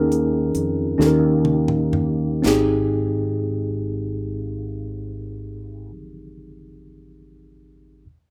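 A mellow tine electric piano and a fretless electric bass open this slow gospel excerpt in 6/8, around 39-47 BPM in Ab major, soulful and jubilant as it slows down over Eb7sus4 moving to Eb7. A tight funk drum kit, dry and polished with bright cymbals and a high-tuned snare, plays a fill across china cymbal, hi-hat, snare and toms, then stops at 2.7 seconds, shortly after the harmony arrives on Abmaj7. The up-front bass, amped and coloured with an ensemble chorus, drops out at 5.9 seconds, leaving the worn, slightly out-of-tune piano alone until 8.1 seconds in a rough home-demo mix with moderate studio reverb.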